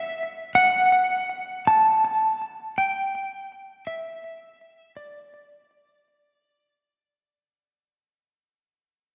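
A dark, clean electric lap steel guitar carries the melody up front, its fingered slide lines compressed and trailed by delay as they move between D5 and A5 until 6.8 seconds. This soaring, hopeful rock fragment in D major, tuned to A4 = 439 Hz, moves in 6/8 at 55 BPM counted in dotted quarters with a straight feel. A lush hall reverb with a 3.0-second decay soaks the dreamy mix, and the whole passage fades out across its 7.2 seconds, cut from a longer piece.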